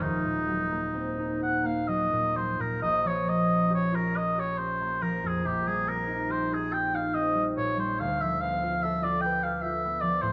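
Heard in a recital hall with a moderate 1.8-second reverb, this mysterious, hazy fragment of an impressionist classical duo unfolds in a rubato 6/8, with a roomy, soft-attacked oboe singing the melody up front over ringing, thumb-plucked concert harp accompaniment, the music shifting into a second section at 2.8 seconds.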